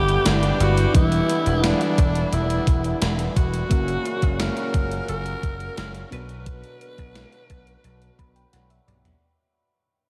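Nostalgic yet urgent, this short 1980s-style pop fragment moves at 87 BPM in B harmonic minor, fading out across its whole 9.2 seconds as the harmony passes from G6 through Em7 and F# to Bm. A raspy, gritty alto saxophone carries the melody up front with vibrato, scooped notes and tape echo, while a punchy vintage slap bass and a thumpy gated digital drum machine, its snare drenched in gated reverb, drive underneath. A warbling FM electric piano with phaser sits in the background and adds a fill from 7.8 seconds, a reedy, breathing hand-pumped harmonium holds sustained chords, and the drums close with a fill at 8.5 seconds, all soaked in a huge, dreamy ambient reverb.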